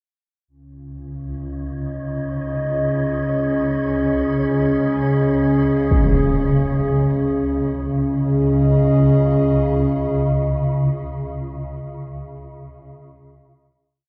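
Floating in free time, this complete dark ambient drone piece feels unsettling and ominous from its first moments. A deep, moody analog pad opens at 0.5 seconds with slowly shifting sustained chords, its detuned square, sawtooth and triangle tones thickened by a sub octave and chorus, while a tense, swarming drone settles underneath with a granular, detuned shimmer and a moving notch that keeps it evolving. High above, an airy, breathy wind-like noise texture holds a single note in the background before falling away at 7.7 seconds. A huge, bright yet distant impact lands at 5.9 seconds, softened by a low-pass filter. After that, a final chord hangs as the pad and drone sustain together. The pad and drone sit up front within a cavernous ambient reverb, giving the whole piece a dark, warm production.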